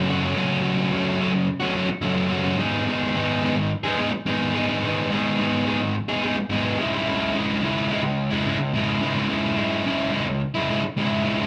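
A straight 4/4 pulse at 107 BPM drives this swaggering, gritty rock excerpt in C# minor, tuned slightly flat to A4 = 439 Hz. A sludgy, dark electric guitar plays alone for the full 11.5 seconds: it is picked, overdriven, double-tracked and sits up front, ranging from C#2 to G#4 over F#m, then G#m at 2.6 seconds and C#m at 6.8 seconds. The sound carries a moderate large-studio reverb with a one-second tail, giving the feel of a band playing live together in one room.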